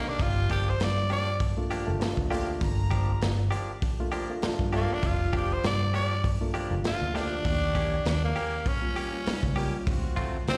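Straight-eighth soul blues in G minor at 99 BPM with a soulful, brooding mood, this live excerpt features a raspy, growling tenor saxophone soloing up front over a reedy electric piano, twangy clean electric guitar stabs, a brilliant horn section holding sustained chords in the background, a round, foam-muted fingered electric bass and a crunchy, saturated breakbeat drum kit entering at 0.2 seconds, all moving from Gm7 to Eb7 at 7.5 seconds and D7#9 at 9.9 seconds in a reverberant recital hall heard through the venue's PA.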